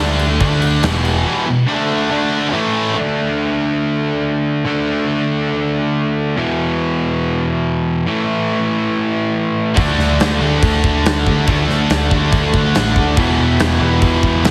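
A heavily compressed, radio-ready sound in a large studio reverb frames this aggressive, driving hard rock excerpt at 141 BPM, where an up-front cranked stack guitar riffs throughout over power chords while a tight distorted guitar, a double-tracked high-gain guitar in the background, a growly overdriven picked bass and a big acoustic kit with punchy kick and bright cymbals hit briefly at the start, drop away, then crash back in together at 9.8 seconds.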